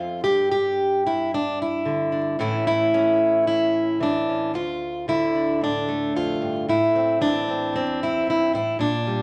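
Reflective and haunting, this short excerpt of folk music features a solo fingerpicked steel-string acoustic guitar, plugged in and placed up front with a warm, concert-like tone ranging from D2 to G4 in straight 4/4 time. The harmony moves from G5 and A into a second passage beginning at 4.5 seconds, where Dm gives way to Am. A wet club reverb and vinyl crackle surround the playing, lending the brief fragment a worn, intimate atmosphere.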